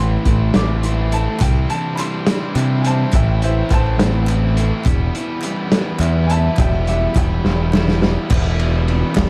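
Indie rock in a restless, cool 6/8 at 70 BPM, this short cut from a longer piece moves through Am, Cadd9, Am and Em in a dark production with light reverb. A brilliant, woody upright piano carries the melody as a solo with plate reverb and analog delay until 7.7 seconds, over two overdriven guitar riffs, one crunchy with lush chorus sitting in the background and the other compressed and bright, while a growling, overdriven picked bass sits up front. A muffled, lo-fi vintage drum kit with dark cymbals and a tight kick enters at 0.3 seconds and plays a fill near the end of the section, and very quiet, hollow group handclaps join at 1.4 seconds.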